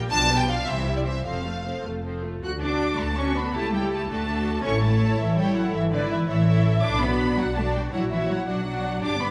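Urgent and dramatic, this quick classical-period movement for string orchestra moves at 109 BPM in a straight 6/8, centred on D major and cut from a longer piece. A rich, expressive violin section carries the melody from 0.1 s, sitting close with lush vibrato, while a second violin section supplies a focused, smooth-topped line. The viola section fills in the accompaniment with an intense, bowed tone, and the cellos and double basses share the bass, the cellos even and warm, the basses rich and up front. After a brief opening passage, the harmony turns at 2.4 s to D and then presses through A and into B minor, keeping the tension high. A wet scoring-stage reverb gives the whole ensemble a spacious, symphonic bloom.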